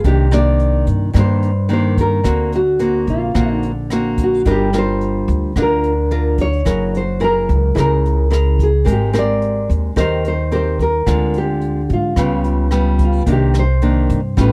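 A woody, up-front upright bass anchors this melancholic, intimate bossa nova fragment from a longer piece, plucked on steel strings beneath a small, fingerpicked nylon-string guitar that sits up front and voices chords from Cm9 through D7alt, F#9 and Db7#11 before returning to Cm9. A thumb-plucked classical second nylon-string guitar carries the melody with a warm tone, while a brush kit adds hi-hat, rim click and a boomy kick from a small room. The sound is dry and close, in the manner of a 1970s studio recording.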